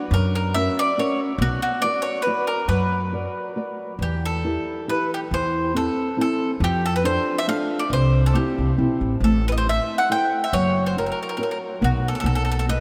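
Italian folk serenade in B harmonic minor, romantic and passionate, moving in a straight 3/4 at 139 BPM in this short excerpt cut from a longer piece. A bright, picked bowl-back mandolin with doubled strings carries the melody up front, over a dark, small-sounding nylon-string guitar thumb-plucked on fresh strings and a woody pizzicato upright bass. The whole trio sits in a vast, echoing cathedral reverb, and after the opening around B minor the harmony wanders from 4.0 seconds through E minor, F6, C and A minor before turning on F# and resolving toward B7 near 12.2 seconds.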